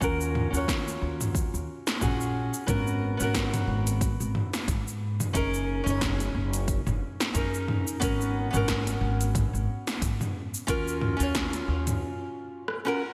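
Relaxed and wistful, this short cut from a longer sunset chillout piece moves at 90 BPM in 4/4 with a swung sixteenth-note feel, set in G# dorian. An up-front, bright nylon-string guitar is fingerpicked as accompaniment, its small tone shaped by a low-pass filter, delay and slapback echo, while a woody, pizzicato upright bass carries the low end until 12.0 seconds. A deep house drum kit sits up front with a punchy snare, metallic hats, rim click, shaker and toms, overdriven and re-recorded in a large room, joined by a deep, layered electronic kick that drops out at 11.5 seconds. The harmony drifts through D#m9, G#m11 and F#69, back to G#m11 and then to D#m9, and a brief break opens at 12.0 seconds, capped by a drum fill. A lush hall reverb gives the whole mix a big arena sound.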